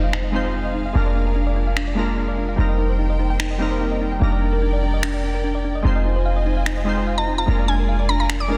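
A very quiet electronic impact opens this emotional, lush future bass excerpt at 147 BPM in half-time. Glassy, detuned digital keys with chorus and tape echo, a bowed symphonic string section with vibrato, and a deep, boomy 808-style bass sit beneath a dark, tine-like thumb-piano synth pluck playing filter-swept arpeggios, while layered, overdriven electronic finger snaps carry the beat over F dorian chords moving from Fm7 through Bb7/F, Cm7/F and Ebmaj7/F, with the bass up front. At 7.2 s a woody, round mallet-like synth pluck enters with a short high melody roughened by 12-bit sampler grit, the piece sitting in light reverb within a dense, heavily limited master.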